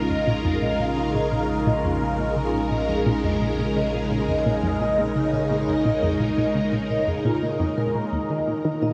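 Ambient, sequencer-driven space music at 86 BPM, hypnotic and mysterious, cut from a longer piece and bathed in a huge, wet reverb. A swirling, vintage string machine with ensemble chorus and phaser holds bright, up-front sustained chords, while a soft-mallet vibraphone rings out metallic arpeggios through a low-pass filter and analog delay. A tight, detuned sawtooth synth riff with chorus and delay enters at 0.1 s over a round, deep analog bass, and a filter sweep runs through the synth arpeggio sound as the harmony rests on Bbm7 before moving to Eb5 at 8.1 s.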